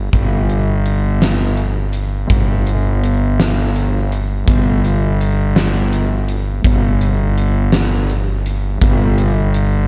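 Post-rock with a cinematic, brooding mood, this short excerpt cut from a longer piece moves in an unhurried 6/8 with a straight feel. A fuzz-drenched fingered electric bass carries the low end from the very start, its overdriven, growly tone sitting up front and reaching down to G1 with a bright, direct-amped bite. A huge arena drum kit enters at 0.1 seconds with hi-hat, a punchy kick and a fat snare, the acoustic kit also placed up front yet carrying a sense of hall space. The overall production is dark and warm, with little reverb, so the two parts land heavy and immediate. The passage stays within a single section, with the drums dropping out at 9.7 seconds just before the bass closes at 9.9 seconds.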